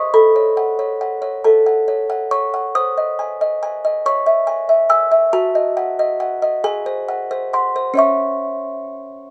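A delicate, tinkling music box carries this classical lullaby by itself from start to finish, placed up front and close in the mix. Its mellow, plucked tone spans a range from the middle register up to bright high notes, giving the fragment an eerie yet wistful mood. The lilting 6/8 metre is handled with a free, rubato feel, so the pulse seems to breathe and stretch like a lullaby. The harmony opens on an A6 chord, then passes through G#/B#, C#m, D#dim/F# and G#7 before settling back on C#m at 8.0 seconds. A light reverb lends the small box a soft halo, and the brief passage, cut from a longer piece, lasts just over nine seconds.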